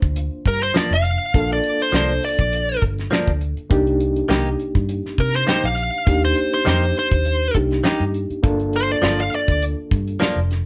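A dark, smooth overdriven lead guitar carries a mournful, soulful solo from 0.5 s over a straight-eighth soul blues groove, backed by a barky, gritty electric piano with fast tremolo, a round, foam-muted fingered bass, a damped 70s drum kit with a fat snare and tight kick, and twangy stabs from a clean, direct-recorded guitar, as the band plays live in a small room over a shift from Gm7 to Cm7 and back in this brief cut from a longer piece.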